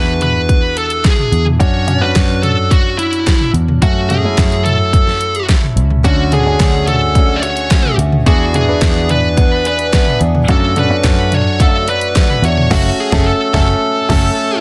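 Piano-driven pop at 108 BPM in D lydian with a warm, anthemic mood, where a dark, high-gain lead guitar carries the melody up front over clear, intimate grand piano with audible action noise, a round, foam-muted vintage bass, a punchy, layered electronic drum kit with deep snare, bright hats and handclaps, and a picked acoustic archtop guitar riff with finger squeak entering at 6.0 seconds, all moving through E7, Dmaj7 and F#m chords in light reverb toward a band accent at 12.7 seconds in this dense, heavily limited excerpt.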